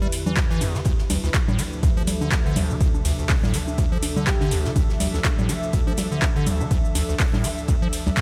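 A squelchy, resonant square-wave acid bass riff with tube saturation and tape echo drives this trippy 123 BPM acid house excerpt over Em7 and Dm7, pumped by a punchy, up-front electronic kick and an analog drum machine of metallic hats, handclaps, congas, ride and shaker, while a very quiet acoustic kit adds hi-hat and snare, a warbling, lo-fi pad holds dark chords in the background beside an airy, breathy pad, and a sparkling, bell-like FM electric piano touches a single note at 4.3 seconds.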